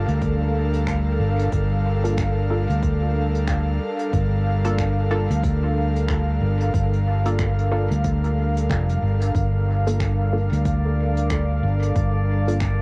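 A breathy, detuned pad holds a Gm7 chord as this deep, meditative ambient dub excerpt opens at 92 BPM in G minor, joined at once by muted, filtered chord stabs with dub echo in the background, a round, dark fingered electric bass up front, an overdriven electronic kick, and brushed finger snaps and hi-hat from a vintage kit swung on the sixteenths, with cassette-tape colour on the pad, stabs and drums and a small-room home-recorded ambience, before a glassy texture of drifting overtones enters at 10.1 seconds.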